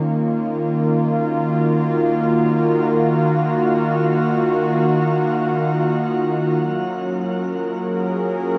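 Reflective and spacious, this short ambient fragment drifts in free time, cut from a longer piece and tuned slightly low to A4 = 436 Hz. A single analog pad, smooth and detuned with a sawtooth edge and slow attack, carries everything alone from 0.0 to 8.6 seconds, sustaining mellow chords from Eb3 to Bb4 up front with chorus and a diffuse ambient delay. The harmony rests on Ebm7 before moving to Gbmaj7 at 6.6 seconds, all bathed in a wet shimmer reverb with a long 8.2-second tail.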